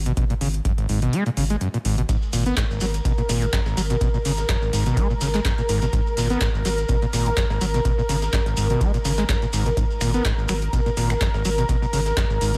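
Acid house at 125 BPM in G# minor, this gritty, driving excerpt swings its sixteenths over a steady G# minor chord. A round, deep analog bass holds G#1 from the start with sidechain pumping, while an overdriven acid riff sits up front, squelchy and resonant with a filter sweep, subtle chorus and tape echo as it ranges from G#1 to B3. An overdriven electronic kick drives the groove alongside a booming analog drum machine with metallic hi-hats, finger snaps and handclaps, though the kick drops out from 1.1 to 2.1 seconds. At 2.1 seconds a compressed, pitched-up breakbeat kit slips in the background with filtered, pumping hats and a medium-tuned snare, joined by a grainy, distant shekere in a large room. A lush, detuned unison pad enters at 2.6 seconds, swelling in slowly with chorus and sidechain pumping over a digital ambience.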